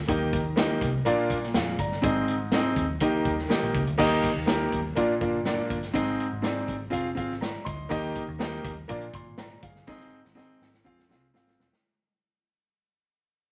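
A clear, intimate grand piano sits up front in this danceable slice of uptempo 1960s-style soul, its audible action noise adding a close, natural touch as it plays accompaniment across a range from Ab2 to C6. Beneath it, a vintage muted picked electric bass gives a dark, round, amped tone, reaching down to Fb1, while a swinging big-band drum kit with a punchy kick, medium-tuned snare, hi-hat and crash cymbal fills a big room. The music moves at 122 BPM in a straight 4/4 feel in Eb major, tuned to A4 = 442 Hz, cycling through Eb, Bb, Ab and Fm chords. A fade-out begins at 4.0 seconds and runs to the end, with a drum fill arriving at 9.9 seconds. Light reverb lends the whole piece a warm glow, and this is cut from a longer piece.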